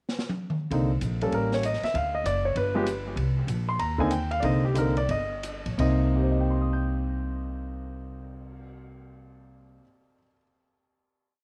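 Swinging in 4/4 after a brief drum fill, this cool, moody jazz piano trio piece sets a dark, small-room kit with sticks on the ride cymbal beneath a woody pizzicato upright bass in a two-feel and a polished, present baby grand with tape echo playing a bebop-style theme and syncopated drop2 comping, slowing from 3.2 seconds into a final Cm7 chord held from 5.8 seconds.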